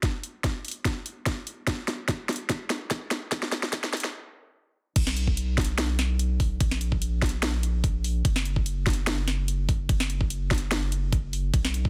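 A dense, heavily limited modern master with a digital ambience and a high-pass filter gives this future bass excerpt a crowded, polished sound, and its lush, euphoric mood rides on a swung, half-time feel. It opens on a build-up, with an overdriven electronic kick drum and a trap drum kit up front. The kick is layered and knocking, re-recorded in a small room, while the kit brings a sharp snare, bright hats, crash and ride cymbals, and its own overdrive and small-room ambience. A drum fill runs until a stop at 4.1 seconds, while a filter sweep carries the build all the way to 5.0 seconds. At 5.0 seconds the drop lands and a saturated sub bass enters up front: deep, thick and triangle-toned, with a fast attack, long sustain and sidechain pumping beneath the gritty drums.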